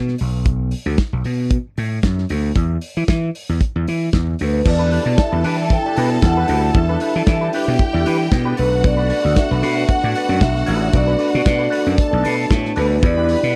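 A straight 4/4 disco groove at 115 BPM in E minor opens this glamorous, danceable excerpt, with a gritty, overdriven slap bass and a soul drum kit setting the pulse from the very start. The bass sits up front, bright and growly with a punchy bite, while the kit's tight kick, medium-tuned snare, hi-hat and dark crash cymbals sound close and compact, their top end rolled off. Over the first few seconds the harmony moves from Bm to a chordless stretch before the full band arrives around 4.7 seconds on Em7, later shifting to Bm7. A vibraphone with medium hard mallets carries the melody from 4.4 seconds, metallic and ringing with a slow motor vibrato, joined by a clean, fingered semi-hollow electric guitar whose accompaniment is colored by wah and spring reverb. A clear, lush studio string section adds a bowed second line with focused vibrato, while a dark French horn section holds soft-edged sustained chords, distant and roomy in the background. 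The whole production has a dry, close 1970s studio sound with little room ambience.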